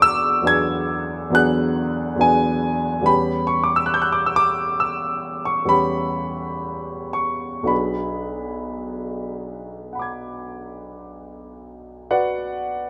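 A warm, present grand piano, up front with long sustain and light reverb, plays alone in this mysterious, hazy impressionist classical excerpt, drifting in a rubato 5/4 at 46-72 BPM across a range from B1 to G#6 as the harmony moves from E13 to Em6 at 3.1 seconds and Bm6 at 7.7 seconds, captured by close, detailed microphones.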